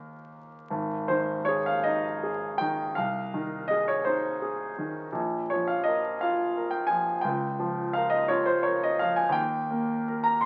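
Classical romantic nocturne for solo piano in Ab major, dreamy and serene, drifting in a rubato 12/8 at 48-59 BPM, where a bright concert grand with deep bass and short sustain sits up front, ranging from Ab1 to C6 through a wet studio reverb, all heard through the dulled, crackling surface of a very old 78 rpm record in this short passage cut from a longer piece.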